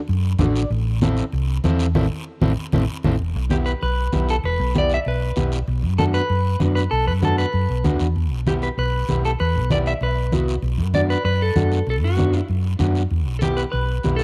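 Driving, danceable cumbia at 194 BPM in E minor, cut from a longer piece, where a round, dark hollow-body bass sits up front beside low-tuned, thin-skinned congas in the background, a raspy, close guiro and a slightly broken-up fingered guitar comping, and after a band accent from 2.0 to 3.2 seconds a clean, picked lead guitar with spring reverb and slapback echo takes the melody at 3.5 seconds over a dry, close 1970s-style studio sound.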